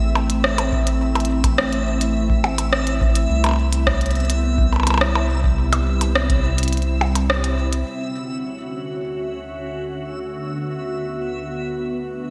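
A glassy, ethereal FM pad holds mellow sustained chords through the whole clip, softened by ensemble chorus and carrying a touch of vintage 12-bit sampler grit, while a reversed, dreamy texture glimmers high above it in this intricate, playful IDM piece. A round, dark analog bass and a glitchy kit of clicky hats, percussion blips and a rim click, treated with gated reverb and digital delay, drive the groove alongside an overdriven electronic kick that enters at 0.7 seconds. The kick stops at 6.4 seconds and the bass and kit stop at 7.8 seconds, leaving the pad and swelling texture alone as the harmony moves from Am and Cmaj7 to Dmaj7 in a bright, 1980s-style digital production.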